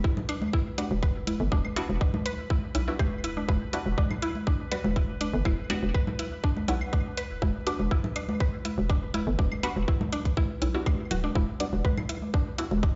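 A tight, up-front electronic kick anchors this hypnotic, sparse minimal techno excerpt at 122 BPM in E minor. It is joined by hi-hats, overdriven congas and claves with delay, and a hollow, bouncy FM bass that knocks in with sidechain pumping from 0.9 seconds. Over them a woody, bright mallet-like synth pluck riff carries chorus, phaser, dub echo and pumping; a muted, nasal sawtooth dub chord stab with phaser and delay enters at 0.8 seconds; and a detuned triangle texture pulses on a sustained B4 in a haze of chorus and reverb, all heard as if through a big sound system in a bare room with a dulled top end.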